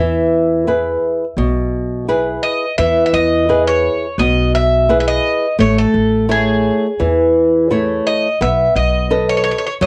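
A homespun cassette recording with a wet small-room reverb catches a relaxed Greek folk band in a brief cut from a longer piece, where a metallic, double-strung bouzouki picks the up-front melody, a fingerpicked flamenco guitar with audible finger squeak and a tape-worn tone carries the accompaniment, and a woody, thumpy pizzicato upright bass on gut strings holds the low end as the chords move from E to A and then to B7 at 8.4 seconds.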